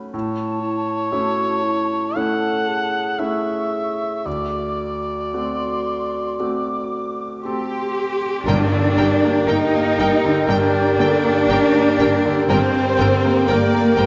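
A clear, intimate concert grand piano with audible action noise opens this moving, sorrowful cinematic excerpt at a slow, rubato 58 BPM, joined at once by a dark close-miked clarinet, a pure flute section and a warm cor anglais over A and D7 harmonies, before a portamento-tinged cello section comes up front at 7.4 seconds and, as the music settles into G minor at 8.5 seconds, lush bowed violins carry the melody in the background alongside a very quiet viola section, mellow sustained French horn chords, a woody double bass section and very quiet hard-mallet timpani, with a second violin line entering at 10.5 seconds, all held in a moderate concert hall reverb.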